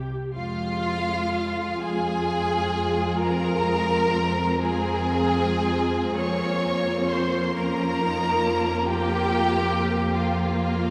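Classical slow romantic movement for string orchestra in F minor, elegiac and melancholic, at a rubato 37-47 BPM in 12/8, where a rich, smooth violin section sings the melody from 0.4 s over a lush second violin line, clear viola accompaniment, a smooth cello section in the background and a focused, up-front double bass holding F2, all bowed with vibrato in a cathedral reverb that lingers 4.8 s, moving from Fm to Bbm/F at 6.2 s in this fragment of a longer piece.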